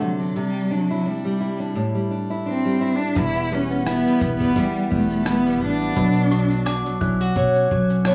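A rich, bowed cello with vibrato carries the melody over a fingerpicked steel-string acoustic guitar from the start, both up front in this carefree, easy-going acoustic pop excerpt at 86 BPM with a light swing on the 16ths. At 3.2 seconds a clean electric guitar recorded direct adds compressed arpeggios in the background, joined by a woody, dark pizzicato upright bass and a gritty, tape-toned sampler-style drum kit of thumpy kick, rim click and shaker. A bell-like glockenspiel played with soft plastic mallets rings a high second line from 6.3 seconds within a light studio reverb, as the chords move from Cadd9 and A7sus4 to Em and Bmadd9.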